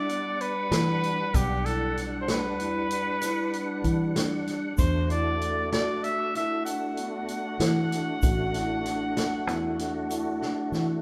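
A wet, church-like reverb surrounds this brooding, driving excerpt of progressive instrumental band music, moving at 192 BPM in 11/8 and shifting from Em7 to D/E at 4.8 seconds. A punchy, up-front trumpet with light vibrato carries the melody over a reedy tonewheel organ with key click, chorus vibrato and a slow rotary speaker, while a ringing vibraphone with slow motor vibrato plays arpeggios. A round, foam-muted fingered bass and a tight, rolled-off vintage drum kit drive the groove, with a grainy egg shaker in the background and a drum fill from 10.4 seconds joined by an organ fill at 10.7.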